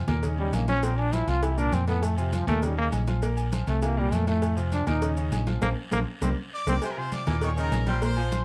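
Sunny and festive, this salsa excerpt in F major moves at a brisk 200 BPM, with a bright, punchy trombone soloing up front over a round, dark hollow-body electric bass and a clear, intimate baby grand piano whose action noise is audible. Congas, a low-tuned cowbell, ringing agogo bells and timbales, a raspy guiro and grainy maracas sit in the background, and a drum fill and band accent arrive at 5.6 seconds. A tight trumpet section takes the melody from 6.5 seconds, joined at 6.8 seconds by a saxophone section with vibrato on a low second line, all within light reverb and a dark production.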